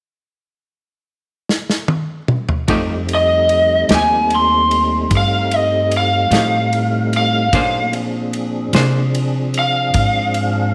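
Laid-back and rollicking, this slow blues in 12/8 opens with a small-room acoustic drum kit playing a fill at 1.5 seconds, its dark cymbals and punchy kick setting a natural country feel. At 2.7 seconds a woody, growly pizzicato upright bass, a twangy electric guitar at the edge of break-up with tremolo, and a clean tonewheel organ with key click, slow rotary speaker and chorus vibrato come in over an F9 chord that later moves to Bb9. From 3.1 seconds an up-front lead guitar, dark and overdriven through a small cranked amp, takes a picked solo over light reverb.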